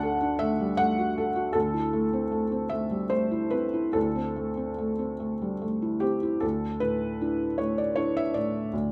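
Neoclassical minimalist piano in a tender, intimate 3/4 with a rubato feel: a lone felt-muted upright piano, soft, mellow and close up front, spans from low bass to the upper middle register, tuned slightly below standard pitch, and sits in a moderate studio reverb as this brief excerpt moves to a new section at 6.4 s before breaking off at 8.9 s.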